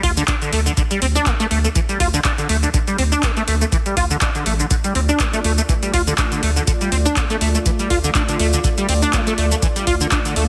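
A swung sixteenth-note groove in four drives this raw, gritty slice of acid house, built on a deep, tape-warmed electronic kick and an analog drum machine whose metallic hats, handclaps and shaker sit up front. A squelchy, resonant sawtooth acid riff with a filter sweep and a fast, decaying attack cuts through brightly, smoothed by ensemble chorus and delay. Beneath it, a thick, saturated sine sub bass holds the low end with sustained notes and sidechain pumping. At 5.1 seconds, a mellow, detuned analog pad enters with slow-attack sustained chords over a single D minor harmony, its chorus and sidechain pumping adding gentle motion. The whole passage, cut from a longer piece, carries light digital ambience and a heavily compressed, radio-like sound.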